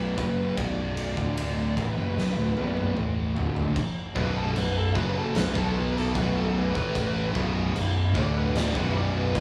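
An up-front, dark thick fuzz guitar riff anchors this heavy, hypnotic stoner and doom metal excerpt in B minor at a slow 75 BPM, accompanied by a very quiet second fuzz guitar and a growly, overdriven fingered bass, while an oversized low-tuned drum kit with a fat snare, punchy kick and dark cymbals rings through a bright stone room and plays a fill at 2.2 seconds. The compressed, wah-soaked fuzz lead guitar moves into a solo at 3.8 seconds, with a double-tracked, high-gain riff guitar joining at 4.2 seconds, all captured with the rough feel of a rehearsal-room recording.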